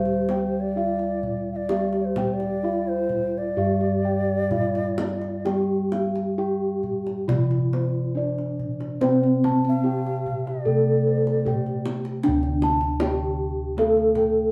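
A straight 4/4 pulse moving between 64 and 78 BPM, kept by tight kendang drumming, carries this ceremonial, shimmering Javanese gamelan music, cut from a longer piece. A ringing bronze metallophone with paired tuning and beating shimmer plays the melody over a lower metallophone struck with padded disc mallets that sounds boxy, while round bossed gongs spin arpeggios above and a mid-forward, mellow set of bossed gongs holds the bass. A close-miked, breathy bass bansuri with vibrato and tongued notes sings a second line until 12.0 s. The melody metallophone, the arpeggio gongs and the kendang carry a vintage, band-limited colour, and the whole ensemble plays live in one room, bathed in a wet, large studio reverb.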